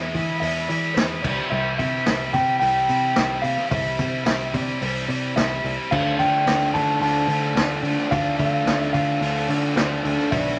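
Indie rock at 109 BPM in a straight 4/4, moody and restless, with a dark, clean, fingered electric guitar carrying the melody over a scooped, high-gain distorted guitar riff, a punchy foam-muted fingered bass and a vintage acoustic drum kit with dark cymbals and a rolled-off top, all moving from E through Cmaj7 to Dm7. A shimmering, retro pulse-width pad with chorus holds sustained chords in the background, and a jingly, very quiet tambourine sits close and dry. At 5.9 seconds a crunchy overdriven guitar joins up front with a second riff, all within a moderate studio ambience in this excerpt cut from a longer piece.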